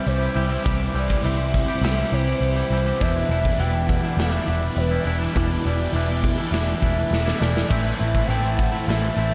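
Awash in a lush hall reverb, this dreamy shoegaze and dream pop rock excerpt moves at 102 BPM in a straight 4/4, blissful yet wistful as the chords travel from C to Em7 and settle on Am at 7.7 seconds. A pure, breathy sine lead glides through the melody with vibrato, chorus and analog delay over a swirling, phased string machine in the background, while a thick fuzz guitar and a twangy, compressed electric guitar washed in reverse reverb play riffs. Underneath, a round, foam-muted picked bass and a gated 80s kit with a punchy kick and bright cymbals drive the groove, joined by a jingly tambourine in the background, and the drums break into a fill from 7.1 to 7.7 seconds.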